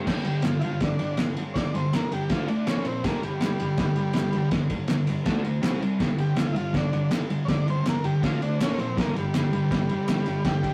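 The recording has a rough rehearsal-room sound, with warm saturation and a moderate stone-room reverb around the players. This gritty, swaggering garage rock excerpt charges along at 162 BPM in straight 4/4 and G minor. An up-front fuzz guitar, dark and double-tracked, drives a picked riff through G5, D5, Bb5 and C5 power chords from the very start. A cloth-damped drum kit comes in at 0.1 seconds with a muffled, lo-fi thud: fat snare, tight kick, and crash and ride cymbals with a rolled-off top. A vintage combo organ enters at 0.3 seconds, overdriven and buzzy with heavy vibrato, carrying the melody. Crisp, close group handclaps sit in the background from 0.5 seconds until 10.2 seconds.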